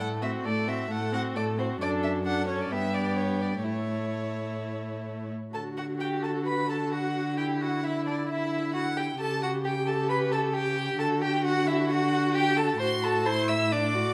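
Graceful and spirited, this quick classical-period string quartet movement in D major at 132 BPM, cut from a longer piece, sets a smooth, vibrato-laden first violin melody up front over a focused second violin line, a rich viola accompaniment and an even, forward cello bass, all bowed by single players in a moderate recital hall reverb as the music moves into a new section at 5.5 seconds.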